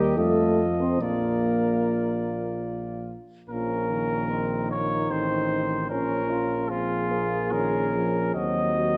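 In a rubato 3/4 at 73 BPM, this triumphant classical brass quintet excerpt sets a punchy, vintage-toned trumpet melody up front over a soft-attacked, distant flugelhorn second line, with a roomy French horn and a close-miked euphonium, both carrying light vibrato, accompanying in the background, and a present tuba bass, as the harmony turns from Bb major to Bb minor at 3.5 s within a dark, moderately reverberant scoring-stage sound.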